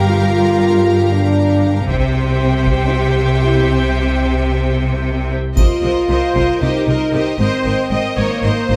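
Dramatic and heroic, this brief cut from an epic orchestral film score moves at 231 BPM counted in eighths, in a driving 7/8 with a straight feel, settling into C minor from 5.6 seconds. From the start, a warm French horn section holds sustained chords over a rich, smooth-toned cello section and double bass section carrying the bass, while a clear, distant viola section accompanies and a focused violin section plays a lush second line, all bowed with vibrato. A taiko ensemble with heavy sticks enters at 1.9 seconds, giving a small-room weight to the drums as the harmony moves from Gm7 to C. At 5.6 seconds, a second violin section takes the melody on a single Eb5, intense yet distant, as the chords turn to Cm7 and then Abadd9, and a dark-toned triangle sounds faintly in the background until the taiko drops out at 6.6 seconds. A moderate scoring stage reverb surrounds the orchestra with a grand, spacious sheen.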